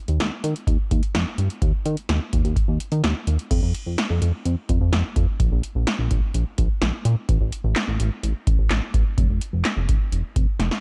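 A glossy, chorused synth bass with a dark, wave-folded pulse-and-sawtooth tone and a plucky filter snap sits up front in this nostalgic yet bright synth-pop excerpt at 127 BPM, tuned to A4 = 436 Hz, alongside an analog electro drum machine with a deep kick, punchy snare, handclaps, crash and metallic hi-hats, a short room on the snare, claps and hats. The excerpt moves into a new section at 3.5 seconds and closes on a drum fill at 10.6 seconds within a dim, digital ambience.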